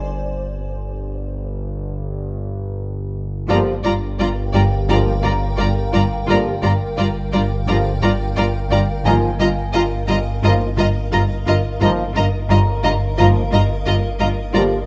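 Mysterious and eerie, this cinematic suspense cue from a longer film score moves at 86 BPM in G phrygian, opening with lush, vibrato-rich violins carrying a high melody and a second line over focused, close violas, a blurred, evolving granular cloud pad with built-in reverb, a worn baby grand piano in the background, and an up-front analog drone on G1 with chorus. At 3.5 seconds the harmony shifts to Gm7 as mellow French horns and bright trombones enter with sustained chords in the background, joined by smooth, distant cellos and smooth double basses holding a deep G bass. Light reverb and close, detailed microphones frame the recording as the chords settle on Bbsus4/G at 9.1 seconds.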